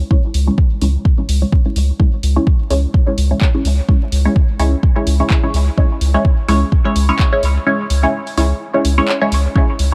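A round, nasal analog bass opens this meditative, hazy dub techno excerpt, joined at once by a deep, tape-warm electronic kick and a muted, detuned chord stab whose filter sweeps throughout, colored by phaser and dub echo, with both bass and stab pumping against the kick. An overdriven analog drum machine adds handclaps and hi-hat lower in the mix, all over a swung 16th-note feel on a single minor chord. The dark, dry production carries a bed of vinyl crackle, and the kick drops out at 7.7 seconds, leaving the bass, stab and drum machine to carry the final stretch.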